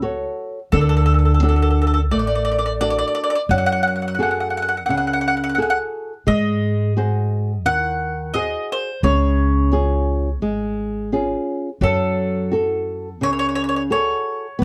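A bright, double-strung mandolin carries the wistful melody from 0.7 s, sitting up front over fingerpicked flamenco guitar and a woody, dark pizzicato upright bass in this romantic Italian folk serenade. At 86 BPM in a lightly swung 4/4 and F# harmonic minor, the trio moves through F#m, D, F#madd9, G#7 and C# before settling back on F#madd9. Light reverb and a dark, warm production shape this fragment of a longer piece.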